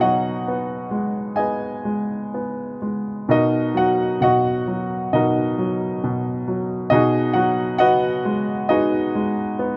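A clear, present grand piano plays alone and up front through this brief, reflective and melancholic classical fragment in G# minor, moving with lyrical rubato at roughly 62-69 BPM in 4/4 across a range from B2 to G#5, its harmony shifting from G#m7/B to Bmaj7 at 3.3 seconds and back to G#m7/B at 6.9 seconds, all captured by close, detailed microphones in a light reverb.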